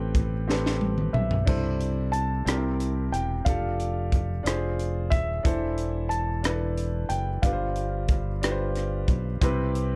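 Reverent and hopeful, this slow gospel cut from a longer piece moves at 60 BPM in 6/8 in C major, with chords drifting from Am9 through F69 and Fm6 to a final Cmaj7. A warm grand piano carries the high melody with short sustain over a clear, intimate baby grand accompaniment whose long sustain and audible action noise sit up front. A bright, direct fingered electric bass anchors the low end, while a crisp fusion kit with a punchy kick, high-tuned snare, a gritty, saturated tone and a pumping room sound plays a drum fill from 0.5 to 1.5 seconds, all in a dry, dark mix.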